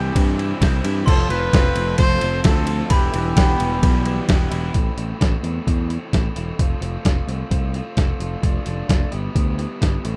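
A rough, dry home-demo mix opens this moody, cool indie rock fragment in straight 4/4. A distant, clear trumpet with light vibrato carries the melody through digital delay, shadowed by a ringing, bell-like glockenspiel and very quiet, warbling vintage cello tones from a string machine. Both overdriven guitars play riffs, the semi-hollow one lush with chorus and set back in the mix, over a round, dark overdriven bass. A gritty, up-front sampler-style kit with a thumpy kick joins at 0.2 seconds. At 4.7 seconds the trumpet, glockenspiel, strings and semi-hollow guitar have all dropped out, leaving the bright picked guitar, bass and drums to drive the remaining chords to 10.2 seconds.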